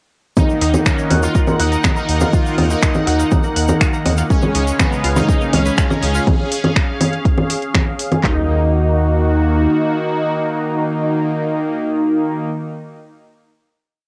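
Melodic techno at 122 BPM in Eb minor, hypnotic and driving, built on a drop from 0.4 s that moves from Ebm to Db before settling on a final Ebm chord at 8.2 s. Two overdriven deep house drum kits sit up front, one carrying a deep four-on-the-floor kick with floor tom and handclaps, the other metallic programmed hats, low conga and finger snaps on the backbeat, with a grainy hand-played egg shaker in sixteenths until 6.2 s and a gritty, saturated off-beat synth bass pumping underneath until 9.7 s. Above them a juicy, detuned resonant sweep polysynth repeats a riff melody with phaser, 12-bit sampler grit and tape echo, joined by brassy analog pad stabs with syncopated pushes, a full-bodied ring-modulated pad holding long chords, and a tight wave-folded 16-step arpeggio in the background, all colored by light reverb and a home cassette sound.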